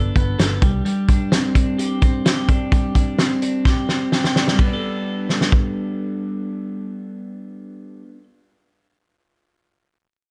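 Light reverb wraps this short cut from a longer jangly indie pop piece, giving it a breezy, youthful air in a straight 4/4. Up front, a bright, twangy twelve-string electric guitar picks clean, compressed arpeggios over Gadd9 and Csus2 chords. A dark, round, foam-muted electric bass sounds only briefly, dropping out by 0.8 seconds. The loose acoustic drum kit sits up front with a fat snare and punchy kick, and the whole kit carries a saturated, gritty sampler crunch with a rolled-off top. A drum fill closes the first section before the kit stops at 5.6 seconds, leaving the guitar ringing alone over Gadd9 until 8.2 seconds.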